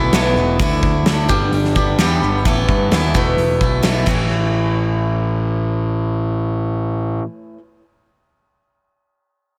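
Lightly reverberant studio ambience frames this restless, bittersweet excerpt of quiet-loud alternative rock in A mixolydian, moving at 130 BPM in a straight 4/4. A bright, boxy acoustic guitar, picked in a swing style and set up front with digital delay, plays arpeggios over suspended chords while a fuzzy, overdriven electric bass holds the low end close and direct. A big-room drum kit with a dark, smooth tone, fat snare and punchy kick drives the first half before dropping out at 4.2 seconds, leaving guitar and bass to carry on until the bass stops at 7.2 seconds.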